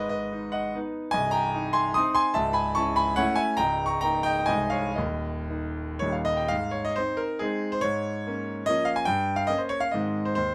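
Classical romantic triple-time dance for solo concert grand piano in Ab major, rustic and graceful, moving in 3/4 with dotted rhythms and a flexible rubato pulse that drifts between 112 and 158 BPM. The clear, natural-toned piano sits up front with a deep bass reaching down to C1 and long sustain, captured by close, detailed microphones in light reverb. Cut from a longer piece, the passage shifts to a second section at 6.5 seconds, where harmonies such as Bbm7/Ab and Gm7b5 lead back home to Ab by 9.9 seconds.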